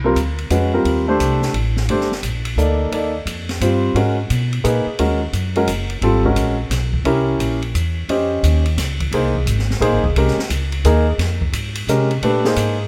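A fast, swinging 3/4 pulse at 174 BPM drives this intense, hypnotic excerpt of modal jazz, with the grand piano comping up front over woody, thumpy pizzicato upright bass and an open acoustic drum kit heard on hi-hat, ride, snare and kick. The drums carry dark cymbals, a high-tuned snare and a boomy kick in a natural studio room, while light reverb gives the whole a gentle space. The harmony moves through Cm9, Abm9 and C7b9 before settling into F minor at 8.1 seconds on Fm9, turning to Bb7sus2 near the close.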